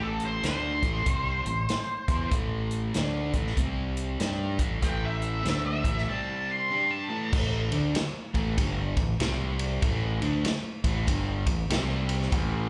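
A dark, fuzzed octave lead guitar with wah, distortion and slapback echo carries the melody until 7.3 s, over a double-tracked crunchy rhythm guitar riff, a bright, punchy overdriven fingered bass and a vintage acoustic drum kit with dark cymbals and a punchy kick, giving this gritty, heavy swung blues-rock and southern-rock power-trio excerpt the feel of a live club gig heard through the venue's PA.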